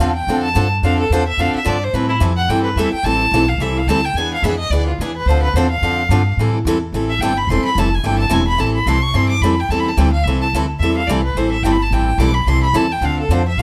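A bowed violin takes a fiery, virtuosic solo from the first second, airy and earthy with light vibrato, over a picked steel-string acoustic guitar and a pizzicato upright bass in this fast acoustic string swing piece at 216 BPM in A minor. The guitar sounds bright, with fresh strings and audible finger squeak, while the gut-strung bass is woody, dark and thumpy, sitting slightly louder than the other two. All three parts are up front in a moderate studio reverb as the harmony moves through Dm7, Am7 and E7b9 across this cut from a longer piece.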